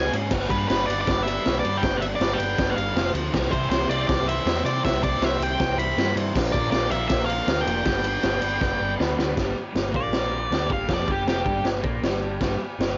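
A dark, up-front octave-fuzz lead guitar carries the melody and breaks into a solo at 9.4 seconds in this rowdy, swaggering garage rock excerpt. Behind it sit a crunchy, double-tracked rhythm guitar riff in the background, an overdriven picked bass, and a gritty, saturated drum kit with a boomy kick and high-tuned snare that plays a fill from 8.6 seconds. A buzzy combo organ with light vibrato enters very quietly at 3.3 seconds, and the dry home cassette recording has a dull, muffled top end.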